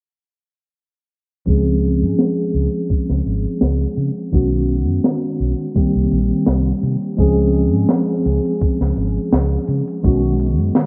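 Woozy and dreamy, this vaporwave fragment sways in a lightly swung 4/4, its mellow tine electric piano coloured by subtle chorus and analog delay as it drifts through Dbmaj7, Cb69 and Cm7 chords. A dark, round, foam-muted fingered bass sits up front beside a thumpy, sampler-style electronic kick and a gritty, saturated metal kit with a high-tuned snare and hi-hat, all entering together at 1.5 seconds. A filter sweep runs throughout, and the wet studio reverb and rough cassette-tape demo mix, dulled by a low-pass filter, give it a hazy, lo-fi sheen.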